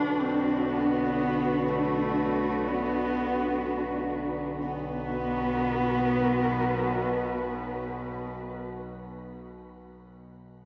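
Dark ambient drone in free time, this short excerpt cut from a longer piece feels unsettling and shadowy from its first moment. A rich, nasal horsehead fiddle carries the melody up front, its husky, airy bowing marked by light vibrato and portamento, and it is bathed in shimmer reverb and delay. Beneath it, a woody cello section sustains lush bowed chords on a B minor harmony, also up front and treated with shimmer reverb. Lower still, a bright, resonant synth drone with moving overtones hums under chorus and its own reverb. A very quiet, grainy, flickering granular texture hovers in the upper register until 4.7 seconds, then falls away. The whole recording sits in a cavernous cathedral reverb with a cassette tape character.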